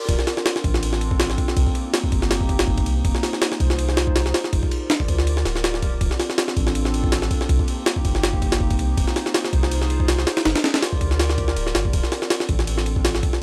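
Dark and nostalgic, this drum and bass excerpt at 162 BPM in D phrygian drops straight into a compressed, pitched-up jungle sampler-style drum kit with a thumpy kick, medium-tuned snare and ride cymbal sitting up front, a deep, round, soft dub sub bass, and a warbling lo-fi tape-like pad with chorus and reverb holding slow-attack chords that cycle through Dm7, Cm7, Fm7 and Gm7, all captured in a dry, gritty hardware recording.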